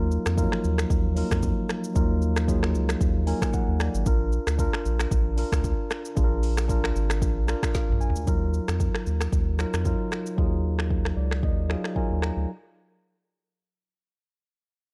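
A mellow, clean tine electric piano sits up front in this hypnotic afrobeats excerpt at 114 BPM, adding fills at 3.0 and 7.2 seconds over Ebmadd9 and Bb chords, while a round, dark analog bass holds the low end and an electronic afro-pop drum kit with a deep kick, woody snare, metallic hats, finger snaps, shaker, rim clicks and toms swings lightly on the 16ths, its fill leading into the second section at 8.3 seconds, set in a digital ambience.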